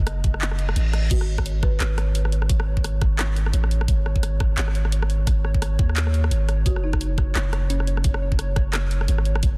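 A deep, sine-toned 808-style bass sits up front through this short cut from a longer half-time drum and bass track at 173 BPM, its long notes striking fast and decaying mellowly between F#1 and D#2. A knocking, layered electronic kick shares the foreground, while the produced drum kit adds hi-hat, rim click, handclaps and crash cymbal, with soft clipping on the snare and a 58% swing on the sixteenths. High above, a pulsing, tempo-synced gated texture of detuned triangle tones in unison swells in slowly and holds with a long release, colored by chorus and its own reverb. A reverse cymbal sweeps in at 0.6 seconds, just before a woody, rustic marimba played with soft mallets appears in the background at 1.1 seconds and returns at 6.7 seconds, its round, boxy notes carried by delay. The harmony moves from F# minor to an open F#5, and the dense, heavily limited mix stays dry overall, creating a spacious yet tense mood.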